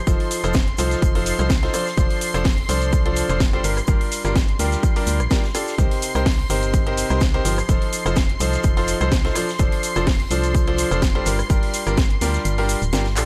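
This piano house excerpt moves at 126 BPM in 4/4 with a light swing on the 16ths, and its mood is energetic and soulful. A clear, smooth concert grand piano with a vintage character and deep low end sits up front playing a riff, carried by tape echo, over chords cycling through F7, Dm7/F, Gm7 and Cm7. Beneath it, an organ-like FM bass adds a hollow, percussive, dark tone with a fast attack and decaying notes. A silky, bright analog string pad built from detuned sawtooth voices holds sustained chords high above, softened by ensemble chorus and a slow attack. The drums centre on a punchy, overdriven electronic kick placed up front, layered with an overdriven house kit of handclaps, hi-hat, rim click, shaker and a cracking snare, plus a very quiet acoustic big-band kit adding hi-hat, shaker and a medium-tuned snare. Sidechain pumping breathes through the pad, piano and bass in a small room ambience, and the kick stops at 12.1 s, leaving the other parts to play on until 13.3 s.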